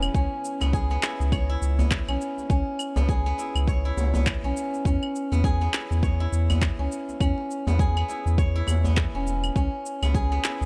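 Meditative and warm, this organic downtempo passage moves at 102 BPM in 4/4 with a 58% swing on the sixteenths, resting in C# minor pentatonic over C#m7 and E6 chords. A bright, silvery steel-string zither played with fingerpicks rings out arpeggios through a delay, while a round, sine-like sub bass sits up front with a fast attack, sustained notes and sidechain pumping. Underneath, a deep, tape-toned electronic kick and layered electronic claves, cabasa and handclaps carry the groove, joined at 0.6 s by a distant, large-room djembe in the background, struck with hard hands and buzzing with metal rattles, the whole set in a light small-room reverb.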